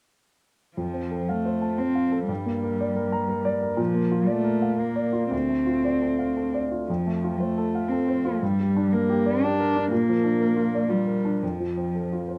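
From 0.8 s, a single dark, woody cello, bowed sul tasto with vibrato, sings a second line while a warm grand piano with long sustain accompanies in this tender, intimate neoclassical excerpt in F major, moving at 118 BPM in a rubato 3/4 through F, Gm, Bb and Dm7, with both instruments up front in a moderate studio reverb.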